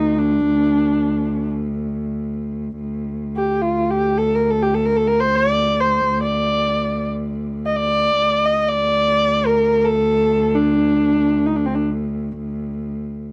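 This Turkish makam ensemble piece has a longing, hypnotic mood and is cut from a longer performance. A single bowed kamancheh carries the melody, its warm, smooth voice shaped by vibrato and sliding portamento, ranging from C4 up to Eb5 with an even, smooth top. Beneath it, a lone cello sustains a rich drone on D2, bowed with a soft attack, vibrato and expressive portamento. Both instruments sound up front and close in a dry 1970s-style studio with little reverb. The kamancheh falls silent at 11.8 seconds, leaving the cello's drone to sound alone until 13.3 seconds.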